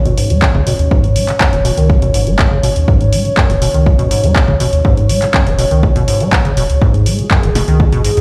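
Acid house with a raw, driving mood, cut from a longer piece, built on a squelchy, resonant square-wave acid bass riff with a filter sweep, chorus, tube saturation and delay, over a round sine sub bass, both pumping with sidechain. A moody, detuned sawtooth pad holds sustained chords from the first moment, roughened by vintage 12-bit sampler grit, chorus and phaser, while a punchy, tape-colored analog drum machine supplies handclaps, hi-hat and snare in a short room. The analog electronic kick enters at 0.4 s and stops at 7.9 s, and the mix sounds as if played on a big sound system in a bare room with large studio reverb.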